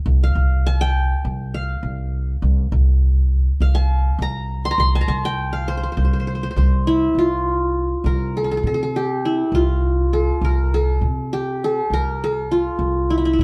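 A dark, woody upright bass opens this excerpt of a Turkish makam ensemble piece at 0.1 s, its pizzicato steel strings sitting up front in the low register. A moment later, at 0.2 s, the qanun enters with the melody, its plectrum-plucked triple strings giving a bright-edged, acoustic tone that sits a little beneath the bass in level, ranging from E4 up to C6. The mood is stately yet festive, in a straight four-beat metre at a moderate, measured pace. At 7.2 s the music moves into a new section, and both instruments carry on together until the fragment breaks off. The two players sound live in one stone room with a moderate reverb, and the recording shows some lossy compression artefacts.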